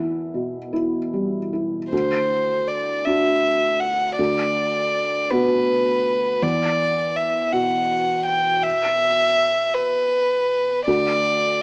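A rubato 6/8 lilt at 54 BPM in E minor carries this melancholic, reflective neoclassical piece for piano and strings, where a soft, felt-muted upright piano with audible action noise plays a dark, boxy accompaniment from the start, and a rich solo violin with light vibrato, airy sul tasto bowing and a gentle attack takes the melody at 1.9 seconds, both sitting up front in light reverb with a small speaker sound, and the chords give way at 10.9 seconds.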